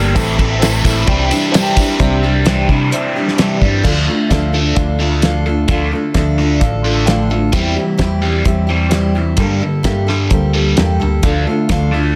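A dry, dense and heavily limited mix opens this wistful, dusty folk rock and heartland rock excerpt in D minor at 130 BPM, where a bright, double-tracked overdriven electric guitar with phaser carries the riff up front over a full-bodied picked steel-string acoustic guitar, a round hollow-body fingered bass, a thuddy cloth-damped drum kit with fat snare and dark cymbals, a boxy upright piano adding fills at 1.3 and 6.6 seconds in the background, and a jingly tambourine that stops at 1.9 seconds, as the chords move from Am and Cadd9 through Dm, C/E and Gmadd9 back to Dm.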